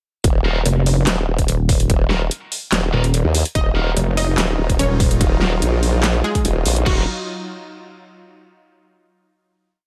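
Chaotic and menacing, this short heavy wobble dubstep piece in Eb minor moves at 145 BPM with a half-time feel, opening on a drop at 0.2 seconds where a punchy electronic kick and a dubstep kit with a huge snare, claps, metallic hats and crash pound beneath two up-front wobble basses, one a formant-swept sawtooth and the other a pulsing, saturated sine, both with chorus, overdrive and changing wobble speed. Bright, double-tracked distorted guitar stabs echo sparsely above, and at 3.6 seconds a detuned unison pluck enters with a repeating riff in octaves alongside a lush supersaw pad with sidechain pumping. The drop ends at 6.9 seconds, giving way to a final chord ringing in a digital ambience.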